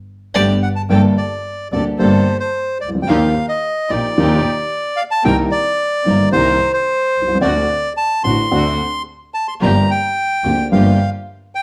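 Tense and passionate, this rubato tango excerpt in G minor at 110 BPM opens on a band accent before a reedy, up-front bandoneon carries the melody from 0.6 seconds over a dark, woody upright piano, a focused bowed double bass with vibrato, and floating, distant chamber string stabs, while a bowed violin with portamento adds a fleeting second line from 0.3 to 0.5 seconds, all played live in one room with a wet stone reverb through chords moving from Gmadd9 through Ebadd9, Cm7 and D7 to Gm7.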